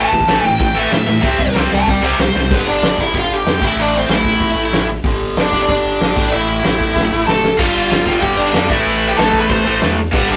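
Raw and aggressive, this short cut from a longer punk rock piece moves in a straight 4/4. A dark, smooth overdriven lead guitar sits up front carrying the melody, opening with a solo over a crunchy, bright, picked rhythm guitar riff that runs throughout. A tight distorted guitar adds its own bright, picked riff at the start, drops out at 2.5 s and returns at 7.6 s, while a deep, round sine-like sub bass holds a sustained low end. The loose acoustic drum kit pushes a fat snare and punchy kick forward with crash, splash and hi-hat, marking the shift into the second section with a fill and adding another at 7.0 s. The harmony moves among A5, C, G, G5 and Am, and everything sits in a rough rehearsal-room sound with a moderate small-room reverb and tube saturation.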